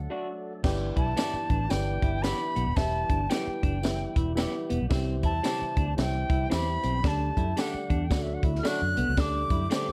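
An airy, vibrato-laden concert flute carries the melody high over this uplifting, danceable 1960s-style soul groove in G major at 112 BPM, swung on the eighths, with a round, foam-muted fingered bass sitting up front beneath it. A reedy electric piano, a slightly broken-up lo-fi guitar playing stabs, a very quiet percussive tonewheel organ with key click and slow rotary speaker, and a clean hollow-body guitar riff through a phaser fill out the chords, moving from G6 through Em and C to a Dsus4 and D. From 0.6 seconds a dry cocktail kit with a high-tuned snare, punchy kick and dark cymbals enters together with a jingly tambourine set distant in the background, all wrapped in a light studio reverb within a dark, warm production.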